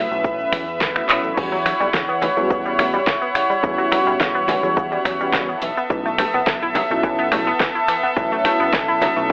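Floating, up-front studio strings carry sustained chords over a sensual, sleek nu-disco groove in E dorian at 106 BPM, with sidechain pumping on the strings, a dark, detuned synth brass with chorus and tape echo, a thick sawtooth analog bass, ringing cabasa and congas in the background, a punchy electronic kick, and a pop drum kit with fat snare, bright hats, handclaps, finger snaps and crash that plays a fill at 1.1 s, before a bright, ring-modulated analog pluck enters at 1.4 s with arpeggios through analog delay as the chords move from B7sus4 to Em69, all heard in this excerpt through a gritty, telephone-like recording with light reverb.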